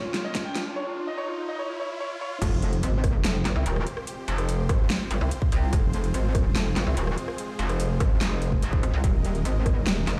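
Played back on a big sound system in a bare room, this heavy wobble dubstep clip carries a large studio reverb and a digital sheen, with its low end trimmed by a high-pass filter. It opens on a build-up in half-time: a clear baby grand piano sits up front with a tape echo on its melody until 2.4 seconds, while a riser climbs and a drum fill sounds beneath huge, lush supersaw chords that pump under sidechain in the background. The drop lands at 2.4 seconds with an electronic impact, and a metallic, FM-tinged wobble bass surges forward with chorus and overdrive, saturated and aggressive. A second, brighter wobble bass joins at 3.5 seconds in the same snarling low register. Driving it all is a punchy, tape-warm electronic kick alongside a dubstep kit with a huge snare, metallic hi-hats, rim clicks and crashes, giving the passage a heavy, aggressive weight.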